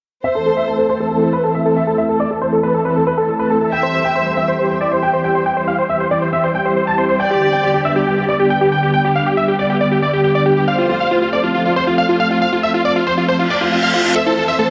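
A straight 4/4 pulse at 138 BPM drives this euphoric, soaring trance excerpt in A minor, cut from a longer piece and moving through Am, C, G and F before returning to Am at 14.2 seconds. A huge, detuned supersaw lead carries the melody up front with a bright, compressed edge, its low-pass filter sweeping across the whole passage and its echoes trailing through delay. A dark, boxy baby grand piano shares the same register as a mellow second line, its short sustain and audible action noise lending an intimate touch under its own filter and delay. A silky, chorused analog string pad holds sustained chords beneath, while a woody, bowed violin section adds brief dark phrases with vibrato at each chord change. An electronic reverse cymbal rises from 13.4 seconds, and a punchy, wave-folded unison pluck enters with a quick arpeggio just before the close, all set in a vast ambient reverb with a long tail.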